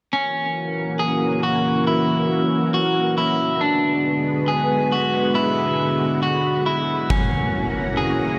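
A lush, vintage string machine fills this short dream pop excerpt with sustained sawtooth chords, its slow attack, sub octave and ensemble chorus giving the full ensemble sound a bright, up-front shimmer. Beside it, an electric guitar at the edge of break-up plays picked, compressed arpeggios with a subtle chorus and tape echo, slightly broken-up and placed close to the listener. The mood is dreamy and ethereal at a slow 69 BPM in a straight 4/4, set in F# mixolydian, with the harmony moving from F#7 to Bm6 at 3.6 seconds and back to F#7 at 7.1 seconds. Just then, at 7.1 seconds, an oversized low-tuned drum kit bursts in briefly with a boomy, saturated kick and toms, gritty and pumping in a bright stone room. A moderate plate reverb and a dark, warm production soften the whole piece, which is cut from a longer work.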